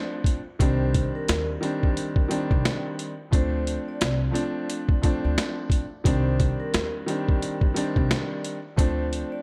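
Reflective yet tough, this boom-bap hip-hop excerpt moves at 88 BPM in 4/4 with a swung sixteenth-note feel, set in C dorian and tuned slightly below standard pitch. A vintage grand piano opens the excerpt at 0.0 s, sitting up front with a smooth, tape-coloured tone as it carries the accompaniment over a Dm7 and Cmadd9 progression. The sampler-style drum kit arrives at 0.2 s, compressed, pitched down and gritty, with a thumpy kick, a medium-tuned snare and hi-hat, all re-recorded in a large room and placed prominently in the mix. At 0.6 s an acoustic upright bass enters, played pizzicato on gut strings for a woody, dark low end. At the same moment a vibraphone struck with medium mallets begins the melody in the background: a metallic, ringing line with slow motor vibrato, trailed by analog delay. Light reverb and a small-room ambience surround the whole arrangement.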